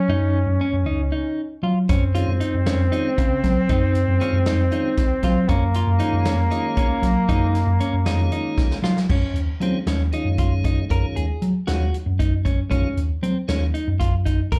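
Intricate and driving, this progressive instrumental cut in 7/8 opens with a distant, roomy flugelhorn carrying a classical-style second line with light vibrato and slapback echo until 8.8 seconds, over a round, punchy hollow-body bass and a compressed, scooped clean guitar picking echoed arpeggios, while a swinging big-band drum kit with boomy kick and dark cymbals enters at 1.9 seconds and plays a fill at 8.6 seconds, and a piping, lightly overdriven tonewheel organ with slow rotary speaker adds accompaniment, captured live at a club gig through the venue's PA.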